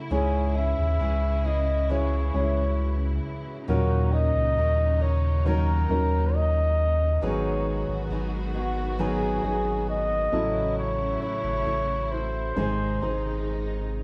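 A mellow flugelhorn sings the up-front melody with scooped, jazz-style notes over a deep, full sub bass, woody upright piano, picked jumbo steel-string guitar arpeggios with finger squeak in the background, and bowed sul tasto strings with a soft attack and vibrato, in a heartbroken, longing pop ballad in C# minor at 67 BPM that moves from C#m through D#m7, G#m7 and F#m7/A to G# in a large studio room.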